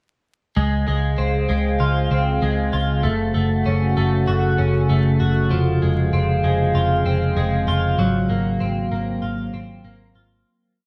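Set in a straight 4/4 at 97 BPM, this short dream pop piece in Db major drifts with a dreamy, ethereal mood, its single verse moving from Dbmaj7 through Gbm and Dbmaj7/F to Ab13 before fading out from 8.0 seconds. A clean, compressed twelve-string electric guitar sits up front with a fingerpicked roll pattern of arpeggios, touched by subtle chorus and slapback echo, while a foam-muted vintage picked bass plays steady, round, punchy eighth notes beneath. A warbling, lo-fi tape-like pad holds nostalgic sustained chords with slow attack, chorus and its own reverb, all set in a dark production with moderate spring reverb and vinyl crackle.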